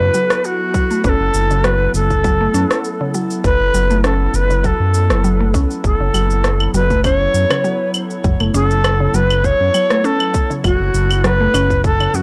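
A dry, gritty recording carries this mystical organic downtempo excerpt at 100 BPM in F# minor pentatonic, where a bright, reedy cedar flute with tape echo sings the melody up front over an airy pad with sidechain pumping, a woody, detuned mallet-like synth pluck playing chorused arpeggios, a smooth, dark synth bass, a tight electronic kick entering at 0.7 seconds, and a tape-warm electronic shaker, rim click and claves, all resting on a single F#m chord with a light 16th-note swing.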